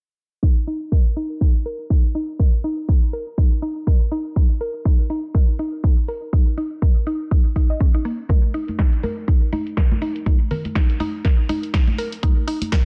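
Late-night and hypnotic, this deep house excerpt moves at 122 BPM in 4/4 with a 57% swing on the sixteenths, driven by a punchy, layered electronic kick drum sitting up front and an analog drum machine supplying hi-hat and snare. A woody, round mallet-like synth pluck spins arpeggios between Bb3 and Eb5, coloured by chorus, sidechain pumping and tape echo, while a filter sweep runs across it for the whole passage. Bright, close and dry congas with hard hands join at 8.3 seconds, all set in a digital ambience with a dense, heavily limited modern master and a low-pass filter.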